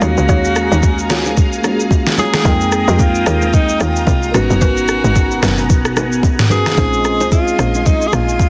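Dry, dense and heavily limited, this soulful, late-night amapiano excerpt sets a breathy, close-miked alto saxophone melody with delay over mellow tine electric piano, vintage string-machine cellos with phaser, ensemble chorus and sidechain pumping, a woody mallet-like synth pluck in the background that drops out at 7.7 seconds, a tight, punchy log drum bass, an up-front electronic R&B drum kit with a soft kick and deep snare, and very quiet congas and bongos played with soft hands.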